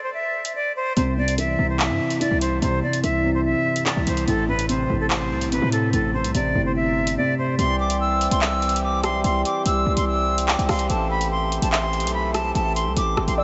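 Half-time drill hip hop with a tense, menacing mood, heard as a short cut from a longer piece. A breathy, bright silver concert flute carries the melody up front throughout, expressive with vibrato and tongued notes, trailed by tape echo. Electronic drums with metallic hats, handclaps and rim clicks, re-recorded in a small room, join almost at once, and a punchy, heavy 808-style bass enters at 1.0 seconds alongside a felt-muted upright piano whose dark, intimate tone, audible action noise and analog chorus fill out the harmony over C and Am7. At 7.6 seconds, just after a brief drum drop, the piano gives way to a reedy, breathing pedal harmonium holding sustained chords, and a very quiet, round pluck adds a gentle second line from 8.4 seconds. The whole mix sits in a huge ambient reverb, giving it a dreamy, soaked sound.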